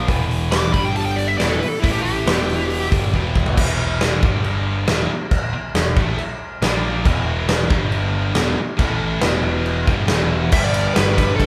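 A bright, high-gain distorted guitar riff opens this heavy, aggressive hard rock excerpt alongside a phaser-tinged overdriven semi-hollow guitar and a growly, punchy picked electric bass, as a huge, up-front arena drum kit joins and a dark high-gain lead guitar solos from 0.5 s to 2.9 s, before a drum fill leads into a section where the semi-hollow guitar sits out until 7.0 s, the band sounding as if playing live together in a large studio room.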